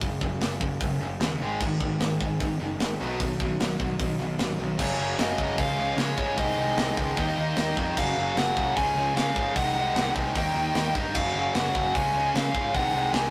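A rough rehearsal-room recording with tube saturation and moderate reverb frames this rebellious, energetic punk rock excerpt, where a scooped distorted guitar sits in the background beneath a tight, bright distorted guitar riff up front, a punchy fuzz-picked bass and a gritty, saturated metal drum kit with a tight kick and medium-tuned snare, until a dark, smooth lead guitar with overdrive and tape echo enters at 4.8 seconds over a repeating Gb, Db, Ab/C, Eb progression.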